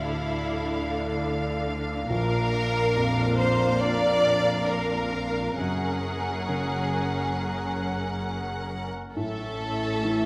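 An uplifting, moving film-score passage opens with the whole orchestra at once: a distant, intense symphonic violin section carries the melody over an up-front studio violin section playing a smooth second line, while a vintage-toned grand piano and an expressive viola section supply the accompaniment. Beneath them, a rich, focused double bass section and a background cello section hold the low end, each string section bowed with vibrato in a loose, rubato 4/4. The harmony moves from Dmadd9 through Bb and F#add9 to A, and a wet scoring-stage reverb lends the ensemble a lush, spacious bloom.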